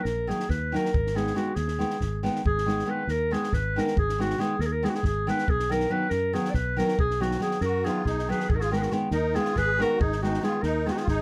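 This is Balkan folk in a wedding-band style, cut from a longer piece: a restless, virtuosic stretch in 7/8 at 278 BPM counted in eighths, set in Ab minor. A roomy, classical-style clarinet carries the solo melody up front from the first moment. Beside it, a full-bodied nylon-string guitar is fingerpicked with audible finger squeak, and a dark, round, foam-muted electric bass holds the low end. A compact cocktail kit in a small room supplies a high-tuned snare and a punchy kick. Across the whole excerpt, under light reverb, the harmony moves from Ebm to Abm, through B, and back to Abm. At 7.6 s a reedy musette accordion with shimmering tuning joins as a second line.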